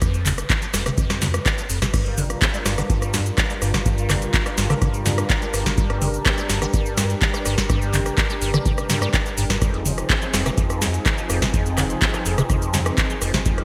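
A straight 4/4 groove drives this gritty, raw acid house cut from a longer track: a deep electronic kick and an up-front booming analog drum machine, re-recorded in a large room, lay down crisp snare, metallic hats, handclaps, rim clicks, shaker, toms and crash under gated reverb. A squelchy, resonant square-wave acid bass riff carries the hook with a filter sweep, phaser, tube saturation, chorus and digital delay, all pumping against the kick, while a round sine sub bass joins at 0.1 s. At 1.9 s a detuned sawtooth analog pad with chorus and a moving notch enters on Gm7, shifting to Fm7 at 9.6 s, all within bright 1980s-style digital production and light reverb.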